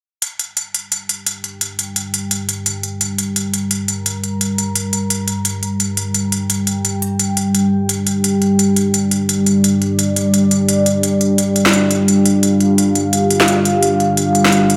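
An industrial electronic drum kit opens this heavy, dark half-time drum and bass excerpt at 0.2 s with a clanging snare and smooth hi-hats, re-recorded in a large room and placed up front in a swung groove, before a deep, moody ambient pad arrives at 1.4 s, its detuned sawtooth unison, sub octave, slow attack and long release holding sustained chords through chorus and built-in reverb, all set in a moderate echo chamber.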